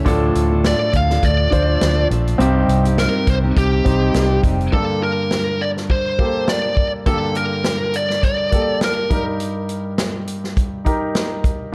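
A swung sixteenth-note groove in 4/4 at 103 BPM drives this bittersweet piano-led pop excerpt in G minor, anchored by a natural country drum kit with a punchy kick and medium-tuned snare. A clear, polished baby grand piano carries the accompaniment throughout, while a full-bodied jumbo acoustic guitar plays a fingerpicked riff in the background and a round, foam-muted vintage bass sits up front; both drop out at 4.7 seconds as the chords move from Dm and Cm to Gmadd9. An overdriven lead guitar with a biting edge carries the melody from 0.7 to 9.3 seconds, framed by light reverb and small room ambience in a dark, warm production.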